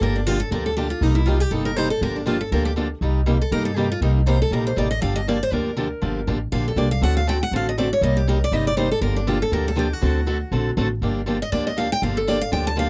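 Jazz manouche acoustic string swing in G minor races along at 240 BPM with a virtuosic, swinging mood. A boxy picked steel-string guitar solos up front over a second picked steel-string guitar comping the Gm7, Cm7 and D7 changes, one of them with audible finger squeak, while a woody, dark pizzicato upright bass with gut strings thumps beneath. The close, dry 1970s-style studio sound carries light reverb, and this 12.9-second cut comes from a longer piece.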